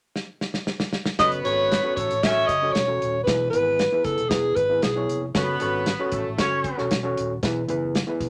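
Driving and urgent, this uptempo 1960s-style soul clip moves at 116 BPM in a straight 4/4, sitting in F# dorian. A dry acoustic drum kit with a tight kick and medium-tuned snare opens with a fill from 0.2 seconds, and at 1.2 seconds the band arrives together over a chord cycle of F#m and E. An up-front alto saxophone carries the melody with a soft attack and a jazz-style solo voice until 5.2 seconds, while a distant, roomy horn section plays a second line with light vibrato. A barky, gritty electric piano, overdriven through a combo amp, sits forward in the accompaniment, and a fingered electric bass holds down the low end with a dark, round, direct tone. The whole is set in a wet studio ambience, and the passage is cut from a longer piece.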